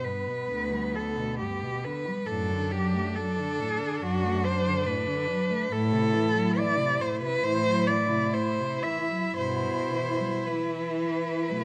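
Classical writing for a cello ensemble, this short excerpt cut from a longer piece has a melancholic, solemn character, moving at an unhurried, rubato pace in four. Four solo cellos play bowed throughout, with the leading voice carrying the melody up front in a rich, expressive tone, shaded by vibrato, soft attacks and portamento. Beneath it, a second cello holds a smooth, even inner line with light vibrato, while the accompaniment cello sits farther back, distant yet expressive, sliding between notes with vibrato of its own. The bass cello enters at 0.5 s, playing sul tasto with an airy, intimate bow and soft attacks, heard close at hand. The harmony passes from G to D/F# and on to F#m7b5/A before settling on Em/G near 9.4 s. A moderate recital hall reverb surrounds the detailed, closely captured sound.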